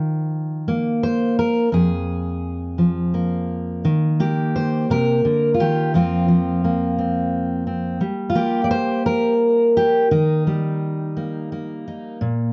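A fingerpicked steel-string dreadnought guitar sits up front, full-bodied and shadowy in tone, with audible finger squeak as it moves between F2 and D5 in this intimate, reflective solo folk piece, cut from a longer work. The slow 6/8 pulse moves at 57 BPM in a straight feel, tuned to A4 = 439 Hz. Over 12.5 seconds, Ebsus2 and Fm give way at 3.8 seconds to a new passage through Eb, F5, Gm and back to Eb, all set in light reverb with a dim, mellow production.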